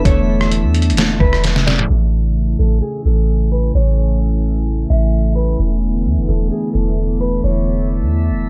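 Blissful and dreamy, this atmospheric cloud-rap excerpt moves at 130 BPM in a half-time 4/4 feel in A major, tuned slightly flat to A4 = 437 Hz, and drifts from E7sus4 to Amaj7 and back. A deep, round 808-style bass and a moody, detuned analog pad with chorus and sidechain pumping carry the piece, while a clean, fingered electric guitar plays a delayed, low-passed melody until 7.9 seconds over a bright texture of drifting overtones. Gritty, pitched-down sampler drums with a thumpy kick, rim click, snare and a drum fill sit up front, and chorused digital key arpeggios in glassy sine tones murmur in the background; both stop at 1.9 seconds as a filter sweep takes over the dry mix.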